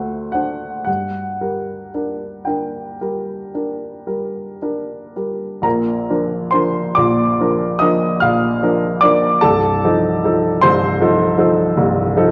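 A woody, up-front upright piano plays a melancholic, yearning romantic nocturne alone in 9/8 with free rubato, moving from its opening phrase into a second section at 5.7 s, all heard through a wet recital-hall reverb and the worn, warbling pitch drift of old cassette tape in this brief fragment of a longer piece.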